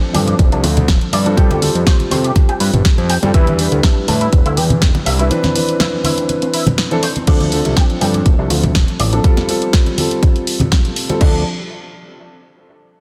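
A punchy, layered electronic kick sits up front from 0.4 seconds, driving this groovy, cosmic nu-disco cut with a lightly swung sixteenth-note feel. Around it, a house drum kit adds a punchy snare, bright hats and crash cymbal, both dressed in studio reverb, while low-tuned congas with a thin-skinned, soft-handed live-room sound sit in the background. A fat, saturated analog bass with a nasal, detuned sawtooth-and-square tone and fast attack anchors the low end, and a clean, twangy electric guitar riff runs through an envelope filter, analog chorus and tape echo. A dark, mellow grand piano with boxy, 12-bit sampler grit and long sustain pumps against the kick as it moves through Dm7, G9sus4, Em7 and Cmaj9. The opening stretch to 7.3 seconds plays as a drop before the progression returns to Dm7 and G9sus4, and the chords fall away at 11.2 seconds in this dense, heavily limited fragment of a longer piece.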